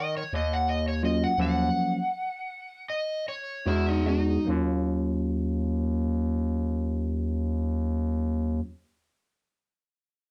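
Mournful and brooding, this excerpt of straight-eighth soul blues in Eb minor moves at 71-87 BPM in 4/4. It opens with an overdriven slide guitar solo up front that slows down over its opening passage, with a growling, thick FM bass beneath it. A clean tine electric piano joins at 1.0 seconds through a combo amp, and the band hits a stop from 1.4 to 3.7 seconds before the harmony shifts from Ebm7 to E7 and back, all in a moderate studio reverb that sounds like a band playing live in one room.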